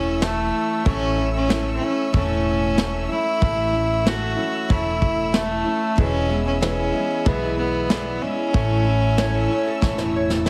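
Nostalgic and down-home, this honky-tonk and classic country excerpt in A major moves at 94 BPM in a straight 4/4, with a clear, nasal bowed fiddle carrying the melody up front over full-bodied picked acoustic guitar, a woody, growly pizzicato upright bass, soft brushed drums that enter at 0.2 seconds and close with a fill, a bright, worn grand piano entering very quietly at 0.8 seconds, smooth studio strings holding chords in the background, and a metallic slide lap resonator guitar joining at 9.2 seconds, all set in a moderate large-room reverb with a heavily compressed radio sound.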